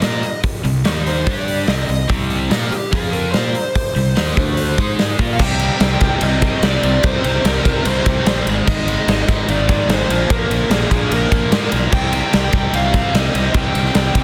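This aggressive, menacing hard rock clip opens with the full band at once: a big acoustic drum kit sits up front in a bright stone room, its punchy kick carrying a touch of soft clipping under a medium-tuned snare, hi-hat, ride and crashes. A growly, fuzz-laden fingered electric bass drives the low end. Two cranked stack guitars play picked, overdriven riffs in the background, one of them colored by a phaser. Above them, a smooth overdriven lead guitar carries the melody with a warm, picked tone. At 5.4 seconds a tight, double-tracked distorted guitar slips in very quietly with another riff and stays until the cut at 14.2 seconds, as the harmony moves from C minor through A-flat and B-flat back to C minor. Light reverb and a small-room ambience frame a dense, heavily limited modern master.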